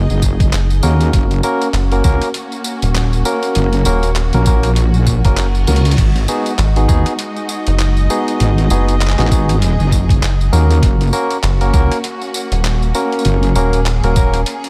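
A gritty, echo-heavy glitch hop excerpt at 99 BPM with a 16th-note swing, funky in feel. A wobbling, detuned wobble bass with chorus and a rubbery, hollow square bass with a moving notch sit up front beside a thumpy, pitched-down electronic kick. Around them sit compressed sampler-style boom bap drums with handclaps, rim clicks, tambourine and dub echo, barky tine electric piano stabs that pump with the sidechain, and a lush bowed string section holding sustained chords over G#m7 and F#. A very quiet reverse cymbal enters at 5.2 seconds and runs to 6.0 seconds, with a drum fill arriving at 5.7 seconds.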